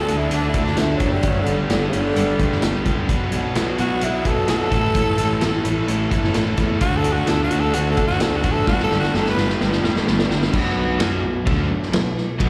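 Classic rock with a gritty, driving feel in a straight four, caught from a live gig through the venue's PA with a light touch of recital hall reverb. A growling tenor saxophone takes the solo up front, raspy and bright with vibrato, close-miked and treated with slapback echo and digital delay, until it drops out at 9.5 seconds. Two overdriven guitars play riffs beneath it, one biting and one a hollow-body sitting in the background, both carrying slapback echo. A round, punchy fuzz bass with overdrive anchors the low end, and a vintage acoustic kit with dark cymbals, a tight kick and a rolled-off top sits saturated and up front, adding a drum fill from 8.7 to 10.5 seconds. The chords cycle through D, G, B minor and A before landing on B minor at 10.5 seconds as a new section begins, carrying on to the close of this cut from a longer piece.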